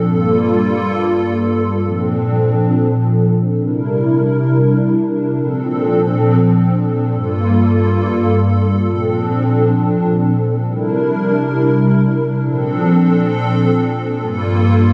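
Blissful and floating, this short hip hop fragment drifts in free time in Bb lydian, cut from a longer piece. A lone hollow, flute-like pad carries the whole 14.9 seconds, its slow attack and long release giving mellow, sustained tones thickened by ensemble chorus as it cycles through Gm7, Bbmaj7 and C7, shifting into a new section at 10.7 seconds. The production is dark and warm, with the pad sitting up front in a lush hall reverb.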